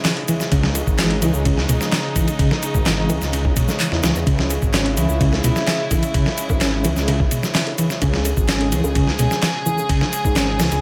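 Gritty and swaggering, this short breakbeat cut from a longer piece rides a straight 128 BPM groove in C# minor, resting on a single C# minor chord throughout. A dusty, sampler-style drum kit sits up front with a thumpy kick, fat snare, hi-hat and ride, compressed and touched with studio reverb, while electronic handclaps and shaker, re-recorded in a small room, add texture beneath. Very quiet bongos and congas ring softly under the hands from 0.2 seconds, and a dark detuned saw bass enters at 0.5 seconds with a deep, rumbling, beating low end. A mellow, reedy electric piano carries the riff through its built-in speakers, shimmering with fast tremolo and digital delay. Behind it all, a chamber string section holds sustained bowed chords with light vibrato and gut-string tone, roughened by vintage 12-bit sampler grit and sidechain pumping, all sitting in a light reverb.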